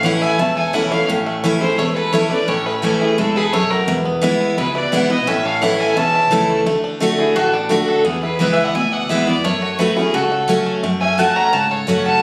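Bluegrass at a brisk 172 BPM in A major, this joyful, lively passage is cut from a longer piece and carries all five players together from start to finish. Up front, a single bowed fiddle takes the melody with a clear, intense tone, light vibrato, an airy bow and a boxy edge, set in plate reverb. Sitting back in the mix, a fingerpicked banjo shares the tune with a bright, twangy, percussive voice, while a lap resonator guitar played with slide adds a metallic, nasal second line. A full-bodied dreadnought acoustic guitar, picked and prominent, drives the accompaniment, and an upright bass on gut strings gives a woody, thumpy, dark pulse from the background. The harmony moves from A to E and back before shifting at 6.7 seconds into a new section through D, E and F#m, and the whole take has the roomy feel of a phone recording treated with moderate studio reverb and compression.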